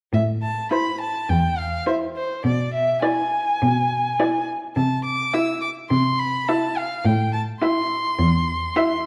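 A rich, smooth violin carries the melody up front, bowed by a single player with vibrato and an even line that runs from the opening moment to about 9.0 seconds. This is a quick, urgent and stormy classical-period movement for string quartet, cut from a longer piece and played with a flexible, rubato feel. A clear cello anchors the bass from the start, its bowed tone smooth and even with vibrato, and it stops at around 8.6 seconds. Joining at 0.7 seconds, a dark, more distant second violin adds an expressive line with vibrato and portamento, while a warm viola fills in the accompaniment on a single pitch, also sliding expressively between notes. The harmony moves from A minor through E7 over B and C6 before returning to A minor. A moderate recital hall reverb and a dark production give the quartet a shadowed, resonant setting.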